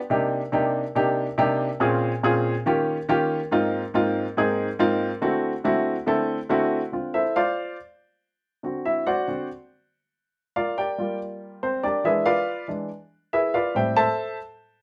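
A straight 4/4 pulse at 141 BPM drives this sultry jazz fragment from a longer piece, where a lone baby grand piano, intimate and up front with audible action noise and short sustain, runs through changes from Cm7 to Ab6 before settling into D minor at 6.9 s and closing on Am7, all set in a moderate studio reverb.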